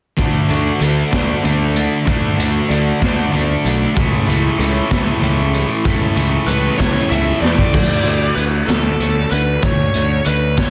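A slow, straight 6/8 pulse at 64 BPM, counted in dotted quarters, carries this bittersweet, cathartic quiet-loud alternative rock piece in D major, moving from D through A/C# to Dmaj7. A gritty, boomy garage drum kit with a saturated small-room sound sits up front beside a thick, bright fuzz guitar riff and a growly, overdriven picked bass, while a twangy, compressed twelve-string electric guitar plays phaser-coloured arpeggios in the background. A dark, distorted bluesy lead with tape echo enters at 6.5 seconds, and after a drum fill the fuzz riff stops at 7.7 seconds, while the lead melody carries on over the Dmaj7 with the drums, bass and twelve-string guitar.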